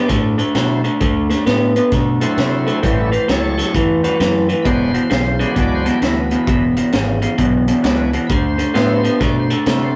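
A swung shuffle at 132 BPM in 4/4 drives this swaggering, soulful electric blues, cut from a longer piece and tuned to A4 = 438 Hz. A crunchy breakbeat drum kit sets the groove with a high-tuned snare, tight kick and hi-hat, its sound dark, saturated and rolled off at the top. A fingered electric bass adds punchy low end from 0.1 seconds. Up front, an electric guitar through a small old amp carries the riff with a picked, slightly broken-up, lo-fi tone. Behind it, a bright tonewheel organ shouts its accompaniment through a slow rotary speaker and light overdrive. The harmony moves from D9 to A9 at 2.8 seconds, then E9 at 4.7 seconds and back to D9, all inside a moderate stone-room reverb that suits the rough rehearsal-room recording.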